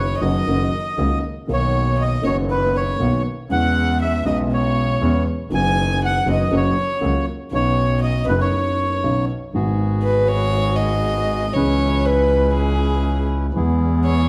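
Elegant and nostalgic, this rubato tango excerpt moves at 119 BPM in 4/4, starting in B major and shifting to G# minor at 9.5 s. A reedy, dark bandoneon carries the melody up front through the opening, while a violin plays a second line with light vibrato, a soft attack and an airy, sul tasto bow that sounds intimate and close. Beneath them, a mellow concert grand piano gives vintage accompaniment with deep bass and audible action noise, and a single bowed double bass, clear and focused with vibrato, anchors the low end. After a break from 8.5 s, the violin takes a solo from 9.5 s over chords such as G#m7 and C#m7, as a second, mid-forward bandoneon adds stabs. A moderate recital hall reverb lends the whole ensemble a sense of space.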